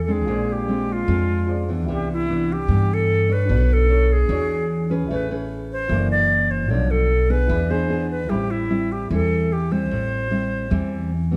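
Bossa nova in a smooth, intimate mood, this short cut from a longer piece puts a bright, reedy alto flute up front, its pure, tongued straight tone carrying the melody over thumb-plucked classical nylon-string guitar with fresh strings and a woody pizzicato upright bass. A natural-sounding baby grand piano adds warm accompaniment in the background, while moderate reverb from a large studio lends the room a slightly distant perspective. The harmony glides through rich extended chords, from Bb9 and Cmaj9 through F#7alt and E7, before settling on Am7 at 8.3 seconds.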